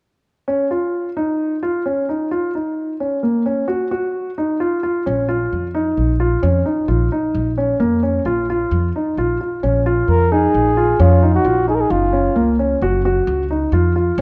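Restless and pensive, this contemporary chamber piece, cut from a longer work, moves at 132 BPM in an uneven 5/4 in Bb minor, opening with a warm grand piano playing up-front arpeggios with long sustain, joined at 5.1 seconds by a woody, plucked upright bass. At 10.1 seconds a mellow flugelhorn takes a brief, smooth classical-style solo melody before the fragment ends at 14.2 seconds. Light reverb and the warbling pitch drift of worn old cassette tape give the sound a wavering character.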